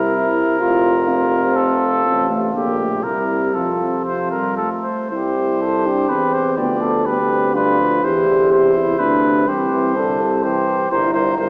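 A stately, triumphant classical brass quintet excerpt in 3/4 at 124 BPM, played with rubato, in which a soft-attacked trumpet carries the melody up front over a mellow, distant flugelhorn second line, a dark French horn entering at 0.1 s, a warm trombone with light vibrato in the background and a clear tuba bass, moving from F major into C major at 5.1 s, all set in a wet scoring-stage reverb heard from further back in the room with a small-speaker sound.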